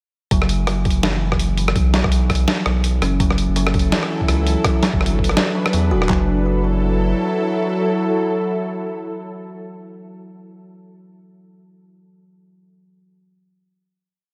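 Half-time drum and bass at 166 BPM in F# phrygian, this short, complete piece feels dark and heavy, with a swung 16th-note lilt and a dreamy, reverb-soaked hall sound. From 0.3 seconds, the drop opens with two gritty, pitched-down sampler-style boom bap kits: one carries a thumpy kick, snare and handclaps in a half-time pattern, while the other sits up front with a sparse beat of closed hi-hat, rim click and snare, both compressed and tape-tinged. Beneath them, a saturated sub bass holds long, deep sine notes with a thick, fast-attacking weight, and a woody kalimba plucks a soft, mellow 16-step arpeggio sequence through delay. At 3.6 seconds, a tense, bright bowed-like drone enters up front with detuned sawtooth unison, a noise layer, vibrato and sidechain pumping, swelling from a slow attack as the chords move from B5 to F#m7 and G. The drop gives way at 6.1 seconds to a final F#m7 chord, where the drone's long release lingers in the hall reverb.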